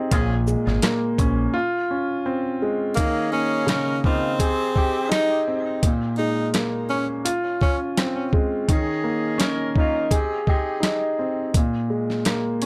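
Gritty and moody, this boom-bap hip-hop cut moves at 84 BPM in 4/4 with a light swing on the sixteenths, set in Bb dorian and taken from a longer piece. A compressed, pitched-down sampler-style drum kit sits up front with a thumpy kick, a medium-tuned snare, rim clicks, hi-hat and shaker, all carrying a tape-warm grit. A dark, mellow grand piano plays accompaniment throughout, intimate with audible action noise and long sustain, over chords that cycle from Bbm7 through Dbmaj7, Eb7sus4 and Abmaj7 before closing on Bb7(no3). A round, dark dub bass appears only briefly at the start, stopping at 1.5 seconds before a short break. From the opening moments until about 11 seconds, a distant, roomy saxophone section adds soft stabs with light vibrato, treated with tape echo. At 3.0 seconds a clear, close-miked tenor saxophone takes a jazz-style solo melody with vibrato and a soft attack, carrying the same echo. 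Light reverb surrounds the whole mix.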